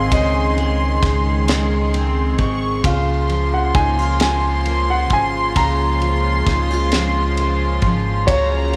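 A dark, mellow baby grand piano with audible action noise carries the melody of this tender, romantic six-eight pop ballad fragment, joined by a close, reedy violin section on a second line, a bright double-tracked picked steel-string acoustic guitar, a smooth, nasal string section holding sustained chords, a round, up-front fingered electric bass, and a studio drum kit with tight kick, high-tuned snare and ride cymbal entering at 0.1 seconds, all bathed in a moderate spring reverb as the harmony moves from Ab to Bbm at 2.8 seconds.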